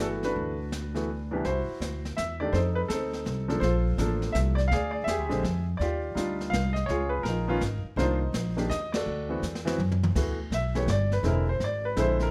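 A clear grand piano carries the melody from the very start, set up front with a plate reverb, alongside a woody, growly upright bass played pizzicato on steel strings. The brushed drum kit joins at 0.2 seconds, its dark cymbals, medium-tuned snare and boomy kick adding a smooth pulse from a studio room. This swinging, playful jazz piano trio moves at a brisk 166 BPM in 3/4, with a swung eighth-note feel. The harmony travels through rich colours such as Gmaj13, Cadd9, Ebmaj9, C#9 and D13, and the band hits an accent at 8.9 seconds before the drums play a fill leading into the next section. From 10.1 seconds the piano takes a short solo over G69 and Eaug7, and the clip stops as part of a longer piece.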